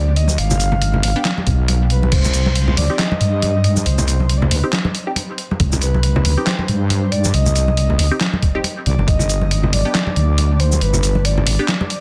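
A dark, brooding stretch of deep dubstep at 138 BPM in C harmonic minor opens on a heavy, saturated wobble bass up front, a breathy, flute-like synth lead with vibrato and dub echo, and muted, phased chord stabs with dub echo sitting in the background, moving from G to Cm and back to G. A muffled, pitched-down trip hop sampler-style kit with a medium-tuned snare, handclaps, hi-hat, shaker and crash drives the half-time, swung groove, while ringing acoustic congas played with soft hands sit in the background. A thumpy electronic kick drops in only briefly, first at 1.5 seconds, all under light reverb and a dense, heavily limited master in this piece cut from a longer track.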